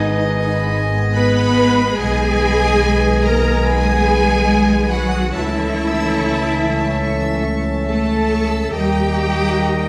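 A melancholic, solemn classical passage in G# minor unfolds at a rubato 69-74 BPM, with a lush bowed violin section carrying the melody over soft, airy flutes, a bright close-miked clarinet, a background oboe and a second, smooth violin line, while an expressive viola section with portamento, a very quiet dark bassoon, mellow trombones and background French horns holding sustained chords, a focused cello section and an up-front double bass section fill out the harmony from G#m toward D# at 8.7 seconds, all bathed in a wet scoring-stage reverb in this brief excerpt from a longer piece.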